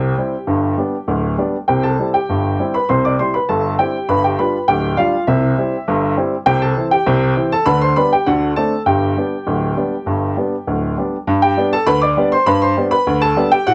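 A clear, woody upright piano carries this short ragtime excerpt on its own, ranging from D1 up to D6 with a polished, up-front presence and long sustain. The mood is playful and jaunty, moving at 100 BPM in 2/4 with a straight feel. Beginning in C major, the harmony passes through G, C, G7 and back to C before shifting toward G major at 6.5 seconds by way of Am/C, G/D and D7, landing on G at 8.9 seconds. A new section arrives at 11.3 seconds, and the recording runs to 13.7 seconds, clipped from a longer piece. The sound sits in a moderate small room and carries the character of worn, warbling old cassette tape, with a wavering pitch drift that gives it an aged tint.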